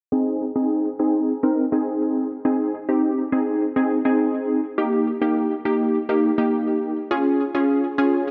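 Bathed in a lush hall reverb, this short pop fragment carries a nostalgic yet bright mood as a lone funky polysynth comps from 0.1 to 8.3 seconds, its punchy, detuned sawtooth and square-wave tones shaped by a fast-attack filter pluck and thickened with chorus, a low-pass filter and tape echo, sitting dark and up front while a filter sweep runs across the whole passage over chords moving from Ab to Eb to Db.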